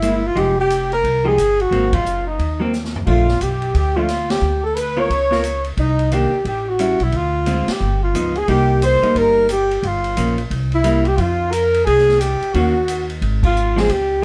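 From the first beat, a breathy alto saxophone carries the melody up front, its close-miked subtone sounding whispered and intimate, with vibrato and scooped notes, while a mellow trumpet plays a second line further back, smooth on top yet forceful. This is cool, moody small-group swing and bop in C minor at 177 BPM, swung on the eighths, and it is cut from a longer piece. An electric hollow-body jazz guitar supplies clean, picked, compressed accompaniment, and a woody, dark upright bass sits up front beneath it. An acoustic drum kit in a natural studio room adds dark cymbals, a medium-tuned snare and a boomy kick, with a short fill at 2.7 seconds and band accents landing together at moments such as 1.9 and 13.4 seconds. The harmony moves through rich chords like Fm9, Bbmaj7, A7 and Gaug7, shifting into a new section at 8.5 seconds, all set in a moderate studio reverb.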